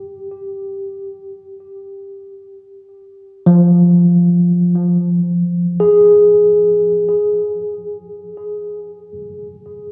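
Ambient in free time, this melancholic, reflective fragment of a longer piece features a clean, up-front tine electric piano playing alone from 0.0 to 9.9 s between F3 and Ab4. It is heard through its built-in speakers with cassette tape coloring and tape echo and moves into a new section at 5.8 s, all set in a wet spring reverb and captured as a home recording on cassette.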